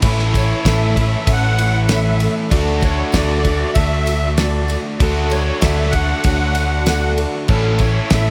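Hopeful and open-road in feel, this short cut of folk rock and heartland rock moves at a straight 96 BPM in 4/4, resting on A and shifting to D at 2.5 seconds before returning to A. A punchy, round electric bass sits up front with a dry 70s drum kit carrying a fat snare and tight kick, while a biting, double-tracked overdriven guitar riff and a shimmering, octave-doubled twelve-string acoustic guitar, complete with finger squeak, both trail dub echo. From 0.3 seconds a reedy musette accordion carries the melody through its own dub echo, joined by a distant, jingly tambourine, with a veiled con sordino string section and a worn, slightly out-of-tune electric piano with fast tremolo murmuring very quietly beneath, all in an echo-heavy mix with light reverb.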